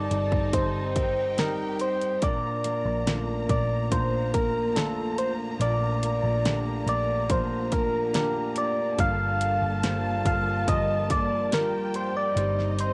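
A gentle, round synth lead with a quick, decaying struck tone carries the melody from the start of this hopeful, tender pop ballad in Bb major at 71 BPM, sitting up front with chorus and vibrato. A lush violin section sings an expressive second line with portamento, a woody string section holds sustained chords in the background, a bell-like tine electric piano adds clean accompaniment, a very quiet fingerpicked jumbo acoustic guitar plays arpeggios, and a dark, foam-muted electric bass anchors the low end. An electronic pop drum kit with a punchy kick, a fat snare and metallic hats enters at 0.1 s, all set in a small room ambience as the chords move from Eb6/G through Bbmaj7 and Gm7.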